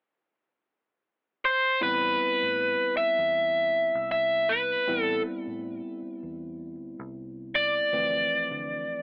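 A telephone-filtered sound with light reverb frames this smoky, brooding blues, cut from a longer piece, swinging at 79 BPM in A minor. A biting, overdriven picked electric guitar carries the melody up front from 1.4 seconds. At 1.8 seconds a barky, gritty tine electric piano pushed through a combo amp joins as accompaniment, over a dark, round, foam-muted fingered electric bass set in the background, with the harmony resting on Am9 before moving to Dm9 at 7.9 seconds.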